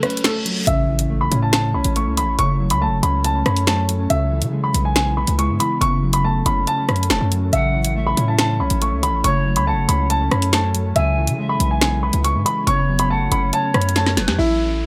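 Hip hop drill at 140 BPM in a half-time 4/4 feel, this tense, cold passage in F# minor has a dark, boxy baby grand piano carrying the melody with audible action noise and tape echo, over a clean, fingered electric guitar and an overdriven drum kit of woody snare, bright hats, snaps and rim clicks. A reverse cymbal opens into an impact at 0.7 s, where a punchy, heavy 808-style bass drops in. An ethereal, detuned pad sits in the background, and a distant, pure pan flute with vibrato adds a second line from 7.5 s until a drum fill and downlifter close this echo-heavy, dry-roomed excerpt.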